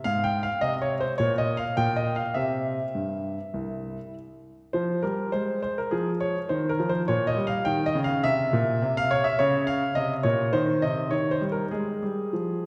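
A clear grand piano carries this classical-period sonatina alone from start to finish, sitting up front in an intimate sound where the audible action noise of the instrument comes through naturally. The mood is elegant yet dramatic, moving at 103 BPM in 4/4 with a rubato feel that lets the phrasing breathe. The piano spans C2 to G5, and its long sustain blooms into a wet concert hall reverb with an RT60 of 2.2 s, giving the recording the spacious ambience of a church or concert hall. The harmony opens on Ab6, passes through C, Fm and a Gdim/Bb, then reaches C7 at 8.2 seconds before turning through Bbm/Db, Cm and Eb. Cut from a longer piece, this 12.7-second passage stays within a single section.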